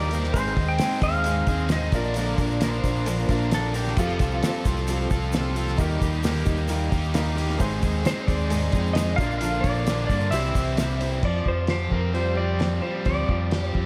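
A straight 4/4 beat at 132 BPM drives this open-road, jangly folk rock and heartland rock excerpt: a cloth-damped, thuddy drum kit with dark cymbals and a fat snare and a round, punchy fingered bass anchor a crunchy, double-tracked overdriven guitar riff and a full-bodied, picked dreadnought acoustic with finger squeak, while a clean, compressed lap steel carries the slide melody with volume swells, drops out briefly and returns at 8.1 s, a twangy, fingerpicked pedal steel adds a second line until 4.4 s, and a very quiet, woody upright piano and grainy tube shaker fill in until the move to Fsus2 at 11.2 s, with slapback echo on the guitars and steels and light reverb in a small room.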